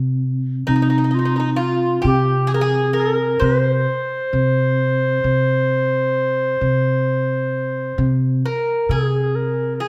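Longing and hypnotic, this Turkish excerpt moves at 131 BPM in eighths through a straight 10/8, set in C makam ussak. A woody, thumpy pizzicato upright bass on gut strings opens alone at the start and sits up front, joined at 0.7 seconds by a dark clarinet in classical style, its smooth top leading the melody as an up-front solo, while a picked Greek bouzouki with metallic double strings and some octave-doubled courses carries a quieter second line in the same register. A moderate recital hall reverb gives the trio a natural sense of space throughout this fragment of a longer piece.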